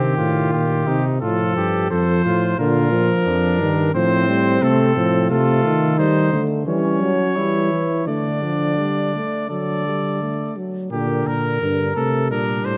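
This classical brass canzona unfolds in an imitative style at 87 BPM in a straight 4/4, with a contemplative, serious mood, and is cut from a longer piece. A clear trumpet sits up front carrying the melody, while a close-miked flugelhorn shapes the second line beneath it. A dark trombone with light vibrato and a smooth top supplies the accompaniment, and a mellow bass trombone, also up front, anchors the bass. The harmony moves from C minor through F, B-flat and A minor seventh before settling into G minor at 5.3 s, passing through diminished colours and a suspended D that resolves to D major before a new section opens at 10.9 s on G minor. A moderate recital hall reverb gives the ensemble a sense of space, and a layer of vinyl crackle adds an aged, intimate texture.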